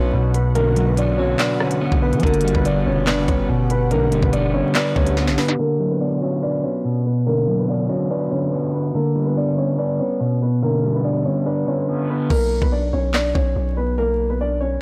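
A dark, boxy concert grand piano carries the melody from the opening moment, filtered and trailed by tape echo, over a slightly broken-up electric guitar and a deep, sine-toned 808-style bass that decays after each note. This short cut from a longer drill track sits at 143 BPM in a half-time 4/4 feel, moving between Bm and G in B harmonic minor with an ominous, cold mood. An ethereal, detuned pad floats far in the background with chorus, reverb and phaser, while an electronic drum kit up front brings a knocking kick, sharp snare, crisp hats, rim clicks, handclaps and crash cymbal, closing its first stretch with a fill. By 5.6 seconds the drums, bass and pad have fallen away, and a filter sweep runs under the piano and guitar. At 12.3 seconds the bass and drums return with the hi-hats muted, and the guitar stops. The whole recording has a dry, gritty character, with transformer saturation, vinyl crackle, a dulled top end and a light reverb.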